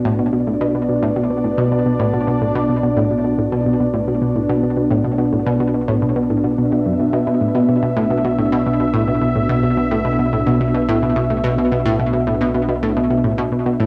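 Through a wet, cassette-taped haze, this hypnotic, expansive stretch of sequencer-driven space music at 108 BPM in B minor rests on a single Bm chord: a warbling, detuned sawtooth pad holds sustained chords up front under subtle chorus, a bright analog pluck repeats its riff from 0.1 s with chorus and tape echo, and a deep, dark round analog bass fades in from 0.0 s in the background.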